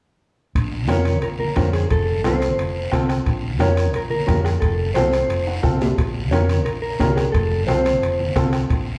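A dark, clean electric guitar carries the melody from 0.9 seconds, its fingered line bathed in spring reverb and slapback echo over a driving, danceable cumbia at 177 BPM in Bb harmonic minor, cut from a longer piece. A round, amped hollow-body bass, soft-beater bombo, raspy saturated guiro, ringing metal-shell timbales and low-tuned congas sitting in the background drive the groove, with a drum fill at 5.5 seconds. A brilliant, woody upright piano accompanies as the harmony alternates between Bbm and F, all heard from further back in a large, reverberant studio.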